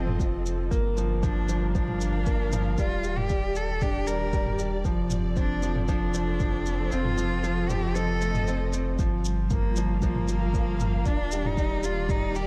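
Moving and intimate, this piano and strings electronica excerpt sits in G minor at 116 BPM in a straight 4/4, cut from a longer piece and moving through F7, Gm7, Ebmaj7 and Dm7/F. A rich, focused cello carries the melody between Bb3 and Bb4, a single bowed player with vibrato heard close. Beneath it, an up-front concert grand plays a riff in its lower middle register, its natural tone carrying audible action noise, while a dark, lush symphonic string section holds sustained chords in the background with a smooth top and sidechain pumping. A round sine sub bass with tube saturation and the same pumping anchors the low end, and layered, tape-warm electronic toms and shaker join at 0.1 seconds with a deep electronic kick that enters at 0.2 seconds. The kick drops out between 6.9 and 9.0 seconds, and the whole has a dark production with light reverb, small room ambience and lossy compression artefacts.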